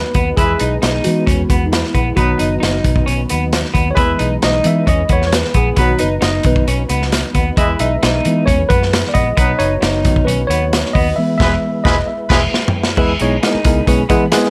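Uptempo 1960s-style soul at 133 BPM in a straight 4/4, this danceable, joyful clip alternates between E and B chords, with a mellow, slightly out-of-tune tine electric piano taking the lead as a solo from the start until 13.0 seconds. Under it, a crunchy breakbeat kit sits up front with a punchy kick, medium-tuned snare, dark cymbals and toms, its sound saturated and gritty with a rolled-off top. A foam-muted fingered electric bass adds a round, amped bottom, while a guitar through a small old amp picks a compressed, lo-fi riff with a slightly broken-up edge. A distant, roomy horn section with light vibrato plays a second line from 0.4 to 12.4 seconds, and a lightly overdriven tonewheel organ holds sustained chords in the background, with key click, percussion on the third harmonic, chorus vibrato and a stopped rotary speaker. The band hits accents from 11.2 seconds, a drum fill runs to 13.0 seconds, and the cut ends shortly after on a dry, short new section.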